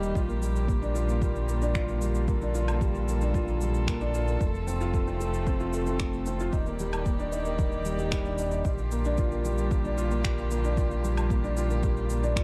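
A dark production with light reverb frames this tender, luminous piece of piano and strings electronica, a short cut from a longer work in Bb major at 113 BPM in a straight 4/4. A felt-muted upright piano sits up front, playing a soft, intimate riff in its middle range with a trail of delay. Beneath it, a con sordino string quartet, one player per line, holds veiled, bowed chords with vibrato, and the quartet breathes with sidechain pumping. A round analog bass built from detuned sawtooth, sine and triangle tones anchors the low end with a fast attack and an evolving, sustained body, pumping in the same way. A layered, gritty kit of electronic shaker, finger snaps and woodblock plays from the start, and the electronic kick arrives at 0.2 seconds, deep and overdriven, all re-recorded in a large room. The harmony moves from Bb6 to F, then Ebmaj7, before settling back on Bb6 at 8.6 seconds.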